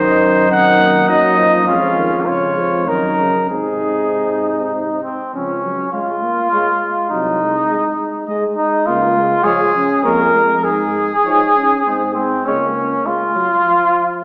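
In a rubato 3/4 at 101 BPM, this brass quintet passage in D-flat major moves with a grave yet heroic bearing, cut from a longer classical piece. The trumpet carries the melody up front with a vintage warmth, while the flugelhorn, also forward but roomy and touched with light vibrato, sings a second line just beneath it. A dark French horn with a smooth top and a soft-attacked trombone with vibrato fill in the accompanying harmony, the trombone sitting in the background, as a mellow tuba anchors the bass. The harmony leans on the home chord and its dominant, opening on a minor-coloured chord before settling into a second section at 5.3 seconds. Trumpet and trombone drop out at 12.7 seconds, the tuba shortly after, leaving flugelhorn and horn to close. A wet recital-hall reverb places the ensemble further back in the room, with a small-speaker sound.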